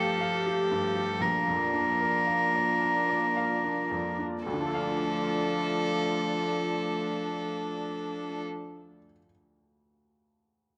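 A fragile, reflective neoclassical fragment in a rubato six-eight opens with a pure, floating sul tasto violin melody up front, together with a distant cello line, an airy, intimate viola, a woody, bright upright piano and a detuned, chorused sawtooth pad holding smooth chords, all slowing through the first 4.4 seconds and sitting in a small echo-chamber room until the strings and pad stop at 8.4 seconds and the piano carries on alone to 10.8 seconds.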